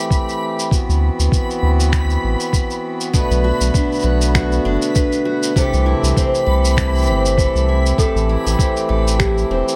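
Folktronica at 99 BPM in A dorian, intimate and wistful, opening on reedy, breathing harmonium chords beneath a reversed, granular swelling texture, while a muffled, pitched-down sampler kick and cabasa with finger snaps set a lightly swung groove and a round sine sub bass sits up front from 0.9 seconds. A full-bodied picked dreadnought guitar adds arpeggios with digital delay from 3.1 seconds, and at 8.0 seconds a delicate, slightly out-of-tune celesta slips in behind as a second line. The harmony drifts through Am7, D13, Bm7 and C6 before returning to Am7, all in light digital ambience in this fragment of a longer piece.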